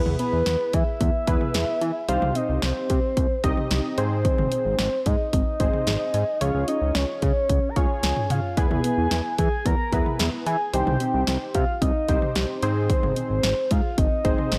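Synth-pop with a bright, wistful mood, this short cut pairs a soft, octave-layered synth lead, round and full-bodied with vibrato, chorus, phaser and analog delay, against mellow, detuned analog keys that carry a filter sweep and chorus. Alongside them, a very quiet, warbling lo-fi pluck spins dusty arpeggios while a fat, thick sawtooth bass holds the low end. An up-front house drum kit with punchy kick, snare, hi-hat and toms joins at 0.1 s, all in a light reverb, as the chords cycle from E through C minor, A-flat and D-flat.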